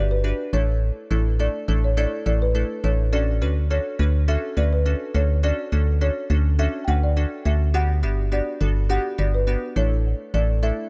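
An up-front, dark, hollow FM bass with an organ-like tone anchors this euphoric, summery dance-pop excerpt at 104 BPM in D major, playing from the start until 10.7 seconds over chords moving through Gmaj7, Asus4 and Dmaj7. Above it, a woody folk marimba played with soft mallets carries the mellow, round melody with tape echo, while a glassy, crystalline wavetable pluck with chorus fills in the accompaniment. The sound is dry and gritty with studio reverb, cut from a longer piece.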